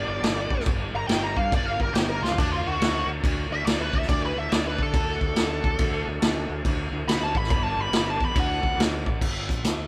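Blues rock and southern rock power-trio excerpt with a driving, swaggering swing feel, where a bluesy lead guitar soaked in wah, distortion and analog delay solos over gritty, thick organ chords turning through a slow rotary speaker in the background, a growly fuzz bass, and an up-front vintage drum kit with a punchy kick and dark cymbals that drops a fill at 2.2 seconds, captured as a band playing live in one room with light reverb.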